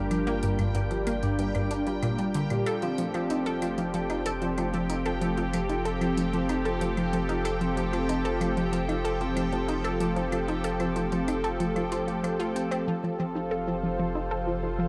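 Expansive and cosmic, this short cut from a longer piece of ambient, sequencer-driven space music moves at 94 BPM, with a lush, nasal unison pad holding up-front chords over a deep, round analog bass, a bright detuned analog pluck riff with chorus and delay, ringing vibraphone arpeggios with delay in the background, a bubbling, resonant stepped-filter texture, and faint electronic hi-hat and claves with metallic hats that stop at 12.8 seconds, all passing from Gm7 to Fadd9 before settling on F at 12.9 seconds as a filter sweep moves across the synth arpeggio sound, heard through a plate reverb with cassette tape character.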